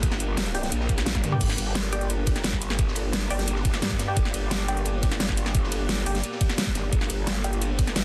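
This aggressive, dark drum and bass excerpt opens straight into a drop, with an up-front growling, wobbling bass, a huge-snared dubstep kit with metallic hats and an overdriven, knocking electronic kick all hitting at once. Behind them sit a moody sawtooth pad with built-in reverb and sidechain pumping, muted filtered dub chord stabs coloured by phaser and tape echo, and a gritty, rolled-off breakbeat kit in the background. A drum fill runs from 1.1 to 1.4 seconds, with a band accent at 1.1, before the drop carries on through a dense, heavily limited master.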